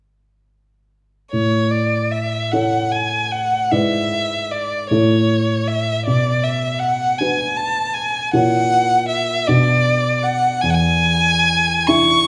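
Lyrical and serene, this short romantic classical passage for violin and grand piano moves in a rubato 6/8 at 51 BPM, counted in dotted quarters, in A major with the tuning set at A4 = 445 Hz. A single bowed violin carries the melody from 1.3 seconds, its rich tone shaped by vibrato, portamento and soft attacks, singing expressively between C#5 and C#6. Beneath it the grand piano plays accompaniment across E2 to E5, with a dark, mellow and natural sound and a short sustain. Both instruments sit up front in a moderate recital hall reverb, and a faint mains hum can be heard in the background. The harmony moves from A through E7/G# back to A, then to Bm, F#7/A# and Bm, and rests on E7 as the passage is cut off at 12.3 seconds.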